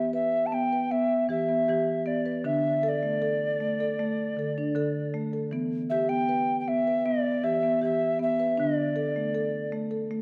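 Dreamy and calm, this meditative world piece for tuned percussion moves at 78 BPM in 4/4 over a gentle Em to D5 progression, as an up-front, hollow alto recorder carries the melody with a tongued chiff and vibrato above round, woody soft-mallet marimba arpeggios, all bathed in a wet echo-chamber reverb in this brief cut from a longer piece.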